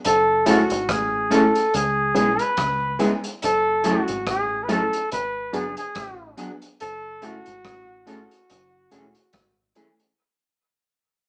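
A warm flugelhorn sits up front and carries the melody in a jazz style, with light vibrato and scooped notes that give this smooth, bittersweet lovers rock reggae excerpt its vintage character. Beneath it, an FM electric piano with tremolo and phaser adds a warbling, mellow bed with a faint noise layer, while a dark, clean electric guitar, played with the fingers, supplies stabs. A deep dub bass, foam-muted and round, provides a punchy low end, and a vintage drum kit of hi-hat, kick drum and rim click, with a punchy kick and rolled-off top, sits in a pumping small room with dub echo. The swung sixteenth-note feel and a chord cycle moving through F#m7, C#m7 and G#m7b5 before settling on F#m9 keep the mood gently unresolved. The band sounds as if playing live in one room, heard through a small speaker and bathed in wet studio reverb, with the whole passage fading out across its ten seconds.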